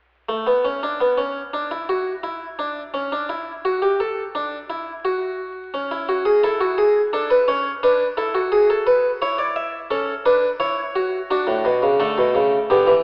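A close-miked, up-front harpsichord in the French style, with a single set of strings, carries this lively, elegant baroque-style fugue in three parts, cut from a longer piece. The plucked tone is bright and full, spanning A2 to E5 at a moderate 86 BPM in straight 4/4, in D major with the tuning set to A4 = 442 Hz. The instrument enters at 0.3 s and plays alone until the clip ends at 13.0 s. Harmony settles in from 5.7 s, moving through A/C#, Bm7 and E, returning to A/C# and resting on D. The harpsichord itself sounds dry, yet the whole recording sits in the long, wet reverb of a scoring stage. A narrow telephone-like filter, vinyl crackle and a faint mains hum give it an old, worn character.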